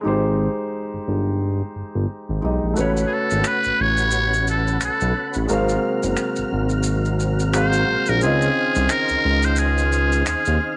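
Sensual and soulful, this neo-soul R&B excerpt opens on an intimate grand piano with audible action noise over a smooth, up-front synth bass; at 2.8 seconds a clean tonewheel organ with chorus vibrato and a slow rotary speaker arrives alongside close maracas and finger snaps, and from 3.1 seconds a buzzy, raspy trumpet in a metal mute carries the melody through tape echo, framed by light reverb and small-room ambience.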